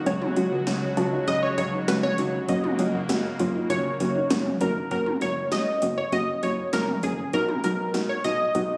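Synth-pop at 99 BPM in F# major, upbeat yet wistful, where a brassy, warbling chorused pad and a gentle arpeggiated pluck open together and stop at 4.9 seconds, while a funky, ring-modulated polysynth carries the melody up front over a dark, soft pluck accompaniment, a fat saturated analog bass and an overdriven drum machine with deep kick, punchy snare, metallic hats, cowbell and toms, all set in a lush hall and caught on a phone in the room.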